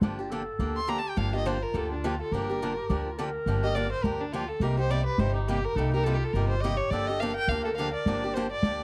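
Virtuosic and swinging, this short excerpt of acoustic string swing in the jazz manouche style moves at a brisk 209 BPM in 4/4 with a lilting swing, set in G minor. A bowed violin carries the melody from 0.8 seconds, its focused, vibrato-rich tone sitting up front as it soars through a solo that reaches as high as C6. Beneath it, a breathy clarinet plays a second line in a narrow middle range, its scooped notes and jazz phrasing adding a soft, airy color. A picked parlour-style steel-string acoustic guitar provides boxy accompaniment, while a pizzicato upright bass with gut strings gives a thumpy, woody foundation low in the mix's front. The harmony moves from Gm9 to Cm7 at 4.6 seconds and settles on Gm7, all wrapped in light reverb and a small-room ambience.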